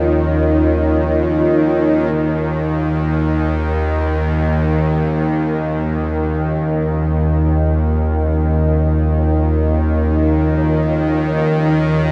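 Dark ambient drone in free time, this ominous, vast excerpt unfolds over a sustained Ebsus2 harmony in a cavernous, echoing space with a long reverb tail of 8.4 seconds. Up front, a bowed-like drone holds the low register from Eb2 to Eb3, its tense, nasal, string-like sawtooth tone slowly evolving with vibrato, a noise layer and its own built-in reverb. Behind it, a deep, moody analog pad sustains chords between Eb4 and Eb5, its detuned sawtooth and triangle layers thickened by a sub octave and chorus. A mellow, vintage-toned concert grand piano plays arpeggios with short sustain, barely audible beneath the other parts. All three sound throughout the full 12.1 seconds, with the opening passage giving way to a longer second section at 2.1 seconds.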